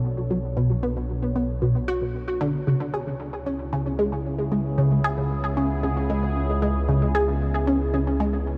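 Ambient, sequencer-driven space music at 114 BPM in 4/4 with a straight feel, cosmic and mysterious in mood, cut from a longer piece. A sweeping resonant pad holds sustained chords from B2 to C#5, its sawtooth and triangle tones wave-folded and slow to bloom. Chorus and phaser shape it, and it fades in across the full 8.6 seconds. Up front, a juicy, squelchy blip pluck plays a riff from B2 to G#4, bright and quick to decay, with phaser, subtle chorus and tape echo. A fat analog bass sits low between B1 and C#2, detuned and saturated, with a filter pluck shaping its tone. The harmony moves from Bm7 to C#m7 at 2.7 seconds, and a huge ambient reverb with an 8.3-second tail gives the whole a vast, distant space.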